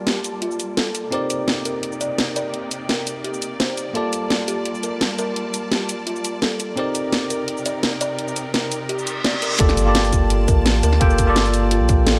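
A straight 4/4 groove from a garage drum kit drives this lush, melancholic liquid drum and bass excerpt, with a cracking snare and bright hats sitting up front alongside cabasa. A bell-like tine electric piano plays the accompaniment through a delay, while a close, bowed string section holds sustained chords under a filter sweep and sidechain pumping. A soft, woody kalimba adds band-limited arpeggios through its own low-pass filter and digital delay. A reverse cymbal in the background from 9.0 seconds leads into an electronic impact, and at 9.6 seconds the drop arrives as a tight electronic kick and a deep, round sine sub bass join in. The harmony moves between Gm9 and Cm9, and a light reverb lends the mix some space.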